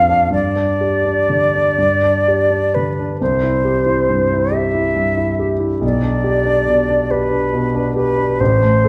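An airy, tongued silver flute sings a lyrical, tender melody with vibrato over a warm, intimate grand piano with deep bass and audible action noise, in a romantic classical fragment in a rubato 6/8 that moves from C to G/B across its 8.9 seconds in a reverberant recital hall.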